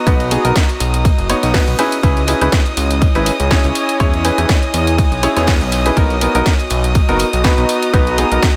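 Piano house at 122 BPM in B major, this short, uplifting and euphoric cut from a longer piece moves through Bmaj7, C#m7, E6 and back to Bmaj7 with a lightly swung 16th-note feel. A clear concert grand piano plays the riff up front, its short sustain and deep low end carried by delay and sidechain pumping. A fat analog bass with a detuned, saturated sawtooth edge and fast attack sits equally forward, also shaped by sidechain pumping, while a clear chamber violin section holds bowed, vibrato-rich sustained chords high above. Behind them, a warbling, nostalgic tape-like pad adds a lo-fi, mellow texture with chorus, its own reverb and a slow attack. The rhythm rests on a punchy electronic kick up front, a house kit with a cracking snare and warm hats, and a very quiet, airy fusion kit whose high-tuned snare, hi-hat and ride add polish, all set in light studio reverb.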